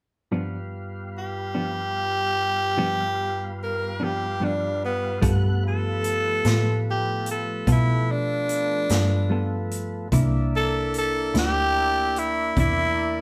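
Slow blues in 12/8 at 49 BPM, swaggering and soulful, where a compressed, fingered electric guitar with tremolo and a smooth tonewheel organ with key click on a slow rotary speaker set the mood before a raspy, growling tenor saxophone takes the melody up front at 1.2 seconds, and at 5.2 seconds a barky tine electric piano in the background, a dark, round, foam-muted electric bass and a swinging big-band drum kit with a punchy kick join as the harmony moves from G9 to C9, all played live in one room with wet studio reverb.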